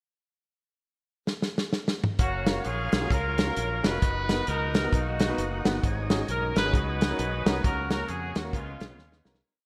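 Uptempo gospel at 132 BPM in F# major with a swung 4/4 feel, soulful and hopeful: a dry, up-front soul drum kit opens with a fill at 1.3 s into a driving two-beat praise groove; at 2.2 s a clear, tight horn section enters with call-phrase motifs over a growly, punchy fingered electric bass that walks and runs with slides and chromatic approach notes, along with a thick, lightly overdriven tonewheel organ pad with slow rotary speaker in the background and a very quiet, lush bowed string section, joined at 2.5 s by an intimate grand piano with audible action noise playing close-voiced off-beat chords, all set in a moderate hall reverb with bright 1980s-style digital production before a fade-out from 7.6 s.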